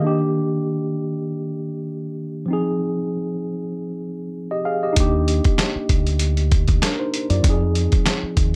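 Gritty, overdriven sampler-style drums hit up front with a thumpy kick, a medium-tuned snare and hi-hat, entering at 5.0 seconds in this short cut from a longer boom-bap hip-hop track. Before that, a mellow tine electric piano plays alone from the start, its clean tone heard through built-in speakers and shaped by high- and low-pass filters as it moves between Ebmaj7 and Fm7 in Eb major. At 5.0 seconds a deep, round fingered electric bass joins the drums, dark and punchy, sitting low beneath the keys. The groove sits at 97 BPM in 4/4 with a slight swing on the 16ths, giving a confident, nostalgic feel. The drums sound compressed and re-recorded in a small room, and the whole mix carries light reverb.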